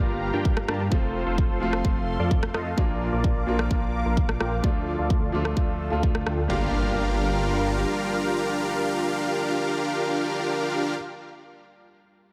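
Opening at once on a clear, intimate grand piano with audible action noise, a lush chorused and phased unison pad in the background, a huge, airy compressed supersaw riff up front under a filter sweep, and a beating, menacing detuned saw bass, this emotional, powerful festival progressive house excerpt in G minor at 129 BPM pumps to the sidechain as a punchy, tape-warm kick joins at 0.5 s and a distant rim click at 0.6 s, moving through Gm7, F, Bb and Dm before the drums drop out and a very quiet electronic impact arrives at 6.5 s, the piano carrying on to 12.3 s in light digital ambience.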